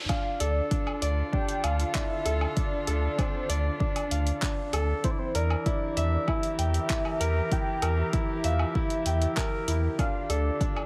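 A grand piano riff with digital delay opens this moving, melancholic piano-and-strings electronica, cut from a longer piece in D minor at 97 BPM. It is joined at 0.1 s by a velvety, detuned synth lead carrying the melody through chorus and tremolo, a veiled, muted string quartet holding bowed sustained chords with sidechain pumping, and a deep house kit of handclaps, hi-hat and woodblock over a deep, up-front electronic kick, with both drum parts tape-warm and re-recorded in a small room. A round sine sub bass arrives at 0.4 s, pumping and high-pass filtered, as the harmony moves from Dm to Edim and back to Dm, and the drop sits in light reverb.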